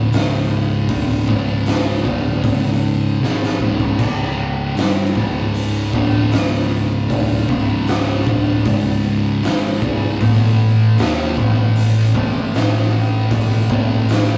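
A slow, straight 4/4 pulse at 77 BPM drives this brooding, hypnotic stoner and doom metal excerpt in C# minor, with an oversized low-tuned drum kit of punchy kick, fat snare, dark cymbals and splash sitting up front and gritty, breaking into a fill at 3.2 seconds. A thick, double-tracked fuzz guitar grinds out the riff over C#5 before shifting to A5 at 10.2 seconds, while an overdriven picked electric bass adds a round, amped low end. The rough rehearsal-room sound carries tube saturation, small room ambience and light reverb.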